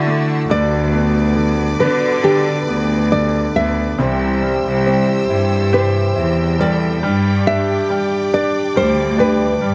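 Pop ballad at 69 BPM, tender and emotional, in which a dark, woody nylon-string guitar carries the melody with digital delay, a French horn section adds a second line in the background, a polished baby grand piano accompanies, a focused bowed string section holds sustained chords, a fingerpicked archtop guitar plays delayed arpeggios in the background, and an earthy cello section sits up front on the bass, all through light reverb across this 9.7-second excerpt moving from G/D to C to G.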